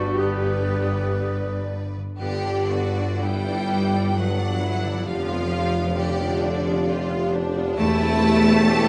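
In a rubato three-four, this tender, lyrical slow romantic orchestral movement, cut from a longer piece, sets a rich, vibrato-laden violin melody over a clear second violin line, lush viola accompaniment, fingerpicked arpeggios from a ringing background harp and a bass of bright, distant cellos and biting, up-front double basses, while an airy flute section, a roomy clarinet, a distant cor anglais and warm sustained French horn chords color the opening until about 1.8 seconds and a warm background tuba joins the bass at 2.2 seconds, all heard in a reverberant recital hall.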